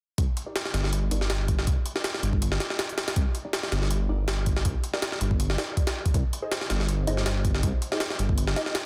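A dense, heavily limited modern mix with little reverb opens this raw, nostalgic drum and bass excerpt in C minor at 161 BPM, where a gritty, pitched-up jungle sampler kit with a thumpy kick and high-tuned snare sits up front beside a deep, rumbling detuned saw bass, both starting at 0.2 seconds. From 0.5 seconds a muted, mellow dub chord stab sits in the background, its short filter plucks coloured by phaser, lush chorus and dub echo. The harmony rests on a rootless Cm7 before moving to Ab at 6.1 seconds, over a lightly swung sixteenth-note feel.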